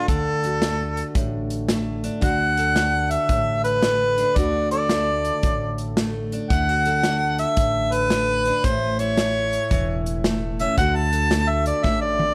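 A mellow harmonica carries the melody up front through this brief honky-tonk and classic country excerpt, soloing from start to finish in a jazz style with light vibrato and scooped notes, its tone distant and roomy. Beneath it, a bright, full-bodied picked steel-string acoustic guitar provides the accompaniment, while a woody, thumpy upright bass played pizzicato on gut strings anchors the low end. A natural country drum kit with an airy, polished studio-room sound, a medium-tuned snare and a punchy kick keeps a swung 4/4 pulse at 112 BPM, closing with a drum fill at 11.8 seconds. The harmony rests on D major, moving to A at 8.6 seconds before returning home to D at 10.8 seconds. Light reverb frames the performance, and the overall mood is heartfelt and nostalgic.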